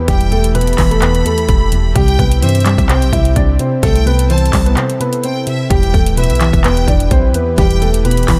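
Trap-flavored hip hop in E minor at 128 BPM with a half-time feel, brooding and melancholic, cut from a longer piece and moving between Em and C with a break from 4.8 to 5.7 seconds. A dark concert grand piano carries the melody through a delay, over a hollow, nasal square-wave pluck with chorus and a filter sweep, while a smooth, detuned analog pad holds sustained chords in the background. A biting, distant violin section adds a high second line, and a deep, sine-like 808 bass and an up-front trap kit of hard-clipped kick, metallic hi-hats and handclaps enter at 0.1 seconds, all set in a digital ambience.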